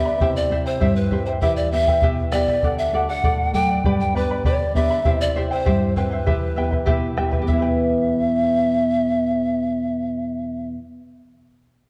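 Melancholic and earthy, this short Andean folk passage, cut from a longer piece, moves in a straight 2/4 feel. A breathy bamboo pan flute carries the melody up front, its crisp, chiffy attack, vibrato and lifted highs giving the line an expressive, warm presence. Beneath it, a fingerpicked charango adds a mellow, shimmering bed of double strings, some of them octave-doubled, while a dark, full-bodied nylon-string guitar, thumb-plucked and placed up front, anchors the low end with a deep classical tone. A round, close bombo enters at 0.2 seconds and drops out at 7.8 seconds, just after the music turns to a new section at 7.5 seconds. The harmony cycles through C, Em, D and G. A concert hall reverb surrounds the ensemble, and a worn cassette-tape character lends the recording a warbling pitch drift.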